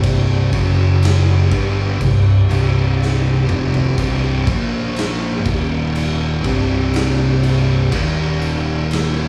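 A thick fuzz guitar sits up front, picking a heavy, distorted riff through chords of C5, F#5, Bb5 and Eb5, while a second fuzz guitar plays the riff further back in the mix. Beneath them, a fingered electric bass growls with a dark, round, overdriven tone, and a tonewheel organ sustains full, thick chords through a slow rotary speaker with light overdrive, tucked into the background. A big acoustic rock kit with a punchy kick, medium-tuned snare, crash and toms sounds out in a bright stone room, breaking into a fill from 3.0 to 4.0 seconds. The mood is brooding and sludgy, stoner and doom metal in a straight 4/4, with the band captured playing live together in one room under a moderate large-studio reverb. This short cut comes from a longer piece.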